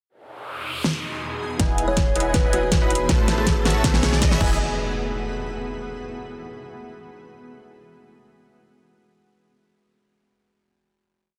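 A noise sweep opens this short, playful and bright future bass piece at 0.2 s, joined by a shimmering, ethereal ambient pad and a pop drum kit with a fat snare and metallic hats, before a punchy electronic kick, a deep boomy 808-style bass, a huge detuned supersaw riff under a filter sweep and an airy arpeggiated lead ride the half-time build from 1.6 s, with a woody, ringing kalimba melody with dub echo joining at 1.9 s, toward a final riser and impact.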